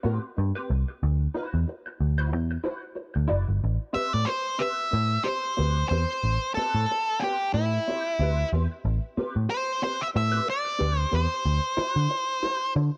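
Driving, funky A dorian groove at 92 BPM with a light 16th-note swing, where a round, foam-muted vintage bass sits up front beneath a compressed semi-hollow guitar comping Am9 and D9 chords through wah and chorus, and an octave-fuzz lead guitar joins at 3.9 seconds with a gritty, distorted solo in light reverb.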